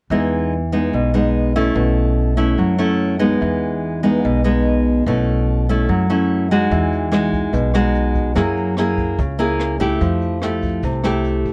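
Sophisticated and sunny, this straight-feel bossa nova passage in E major at 145 BPM, cut from a longer piece and tuned to A4 = 438 Hz, sets an up-front, fingerpicked classical nylon-string guitar over a woody pizzicato upright bass, with a dark, smooth brush drum kit and its boomy kick joining in the background at 6.7 seconds as the chords move from Emaj7 and B9sus4 to Emaj9, F#9 and Fmaj9, captured in a dry, close 1970s-style studio sound with light reverb.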